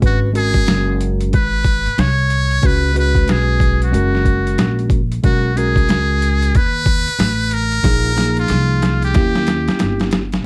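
A mellow tine electric piano, a woody pizzicato upright bass and a gritty, pitched-down boom bap drum kit with a thumpy kick and overdrive open this smoky, nocturnal jazz-hop cut from a longer piece, moving with a swung sixteenth-note feel over minor-key jazz chords. From 0.1 seconds a buzzy, metal-muted trumpet carries the melody up front with vibrato and a slapback echo. The drums play a fill from 7.8 seconds, all set in a dark production with light reverb.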